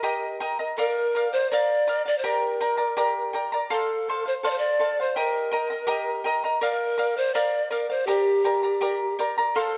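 A reverberant recital-hall ambience surrounds this short cut from a longer Andean folk piece, and its top end is softly rolled off. The feel is wistful and earthy, set in a straight duple metre. A polished pan flute carries the melody up front, its woody, airy tone marked by vibrato, tongued attacks and a breathy chiff. Beside it, a charango provides fingerpicked accompaniment, its double strings bright and shimmering, with some courses doubled at the octave. Both instruments play together throughout the full 9.8 seconds, moving through a cycle of Eb, Bb, Gm and F.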